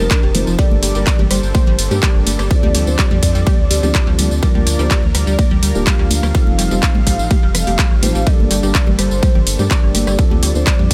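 A punchy, overdriven electronic kick sits up front in this bittersweet, emotional progressive house passage at 125 BPM in G minor. Entering with it at 0.1 s, a layered big-room kit of handclaps, hi-hat, ride cymbal, rim click and tambourine carries the same overdrive. Underneath, a round, deep analog bass with tube saturation and sidechain pumping anchors the low end, while woodblock and congas sit in the background with a small-room acoustic tone. A velvety, smooth synth lead with vibrato carries the melody through chorus and dub echo, over a thick, warbling vintage pad that pumps beneath sustained chords. A detuned unison pluck traces arpeggios with a moving notch and dub echo, and a felt-muted upright piano adds soft, intimate stabs with audible action noise. The chords cycle through F7, Gmadd9, Dm7 and Bb/D in a dry mix, and a very quiet electronic swell appears at 7.5 s in this passage cut from a longer piece.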